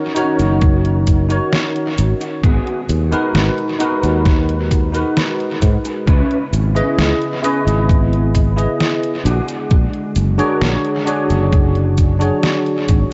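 Melancholic and nostalgic, this slow 66 BPM vaporwave excerpt in C# dorian sets a bell-like tine electric piano and a dark, fingered electric guitar riff, both chorused, grainy with 12-bit sampler grit and dub-echoed, over a very quiet warbling, detuned pad, a growly, punchy fretless bass up front, a thumpy electronic kick and an overdriven 8-bit drum machine of cabasa, hi-hat and snare, moving through D#m7, G#m7, C#m7 and A#7alt in an echo-heavy, cassette-dulled mix.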